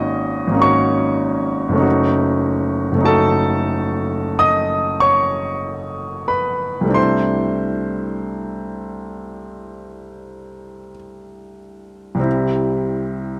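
A clear baby grand piano opens this dreamy, luminous fragment of impressionist solo piano, unfolding in a slow, rubato 4/4 across a range from deep bass to high treble. The harmony drifts through Ab9sus4, F#m6 and C69 before settling on C at 12.3 seconds, as the playing ends at 13.4 seconds. Close, detailed microphones and light reverb keep the instrument intimate and up front, with long sustain and audible action noise lending a natural touch.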